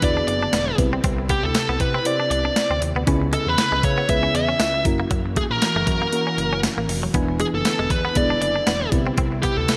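1980s-style pop with a moody, urgent feel, cut from a longer piece, where a bluesy overdriven lead guitar carries the distorted, delayed melody up front over a round FM electric piano with chorus and phaser, a swirling phased analog pad in the background, a smooth, nasal synth bass, a thumpy 12-bit drum machine with hi-hat, snare and tambourine, and a bright, twangy direct-recorded clean guitar riff entering at 0.2 seconds, all moving through E7, Cmaj7, C#m7 and F#7 in a lush hall reverb with bright 1980s-style digital production.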